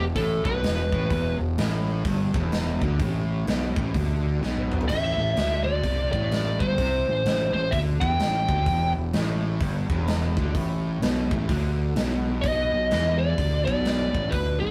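Opening on a brief, dark and compressed fuzz lead guitar phrase up front over a double-tracked fuzz guitar riff and a growly, overdriven fingered bass, this gritty, heavy blues rock and southern rock power-trio excerpt swings in 4/4 as a big-room acoustic drum kit with bright cymbals, a medium-tuned snare and a punchy kick joins almost at once, and a drum fill at 4.4 seconds ushers the lead back in at 4.9 seconds over chords moving from E7(no3) through Am and Em7 to B7#9, heard with a rough rehearsal-room sound and moderate studio reverb.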